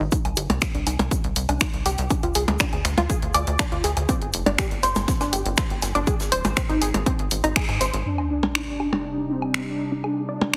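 Dark and dramatic, this excerpt from a longer melodic techno track moves at 121 BPM in a straight 4/4 in C minor, over chords that cycle from Cmadd9 through Ddim, Gsus4 and Ab. A tight, driving sequenced synth plays detuned sawtooth arpeggios dressed in chorus, phaser and dub echo, with filter sweeps shaping its sound throughout. Beneath it, a punchy, wave-folded sequencer bass pumps to the sidechain, alongside a heavy, tape-warm electronic kick that drops out at 7.7 seconds. Up-front techno percussion of finger snaps, hats, woodblock and blips pumps as well, while a very quiet acoustic kit with a fat snare, hi-hat and shaker sits in its studio room. At 8.1 seconds an impact and a sub drop mark a new section, where a bold, warbling analog brass melody with vibrato enters, joined at 8.7 seconds by a mellow, morphing wavetable pad. The whole mix has a heavily compressed, radio-like sheen and a moderate stage reverb.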